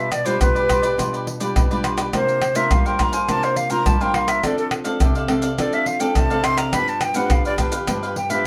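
This short excerpt sounds like a band playing live together in one small room, with a wet, short reverb around the players. It is a playful, joyful piece of samba and choro at 104 BPM in a straight 4/4. A breathy metal jazz flute takes a solo across the whole 8.5 seconds, its straight, tongued tone set against the rhythm section. A bright, crisp picked cavaquinho provides accompaniment alongside a small, fingerpicked nylon-string guitar with a warm tone that sits up front. Maracas, pandeiro, tamborim and a deep surdo come in at 0.1 seconds, close, dry and struck with hard hands. The harmony moves through G7/B, C9sus4, F6 and G7.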